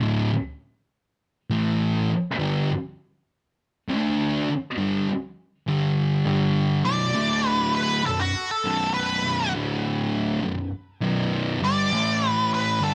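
Light reverb surrounds this brooding, ominous metal excerpt at 101 BPM in 4/4, where a thick, double-tracked fuzz guitar sits up front, picking a dark, distorted riff over power chords on D, A and G. At 6.9 s an octave-fuzz lead guitar enters for a solo, its gritty, picked melody soaked in wah and tape echo as the riff moves through B minor and power chords on D, B, G and A until 12.9 s.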